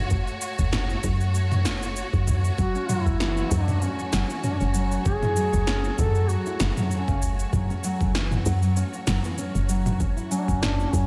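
Organic downtempo with a mystical, lightly swung feel, this excerpt holds one chord throughout as smooth bowed strings and a woody, round FM bass, both pumping, sit beneath a gritty, thumpy electronic kick, an overdriven deep house kit of cabasa, punchy snare and toms, and a very quiet, close udu, until at 2.6 s a dark, distant duduk with scooped notes, vibrato, 12-bit sampler grit and delay arrives alongside fingerpicked, full-bodied nylon-string guitar arpeggios carrying tape and slapback echo, all set in a light studio reverb.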